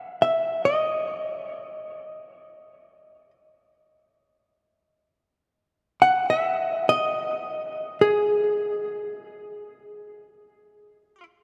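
Floating in free time, this short excerpt of meditative world music has a haunting, unhurried stillness, tuned slightly sharp to A4 = 441 Hz. A lone electric hollow-body jazz guitar plays alone from 0.0 to 11.2 seconds, its dark, clean, fingered tone compressed and placed up front, spanning G#4 to F#5. A diffuse ambient delay trails each note into a huge, wet reverb with a 4.4-second decay.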